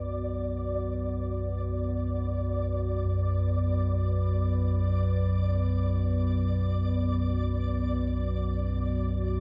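A soaking cathedral reverb surrounds this dark, cavernous ambient fragment in B minor, unfolding in free time across 9.4 seconds on a single B minor chord. Up front, a deep rumbling drone built from detuned, wave-folded triangle and sawtooth tones sits low and ominous. Above it, a mellow, moody pad of sustained chords fades in, its unison sawtooth and sine layers with a sub octave softened by chorus. Gamelan-type bossed gongs struck with padded beaters play barely audible arpeggios, their bronze, beating tone round and smooth. High above, a flickering, grainy granular texture holds a single note and fades out over the full length, adding a restless shimmer to the ominous gloom.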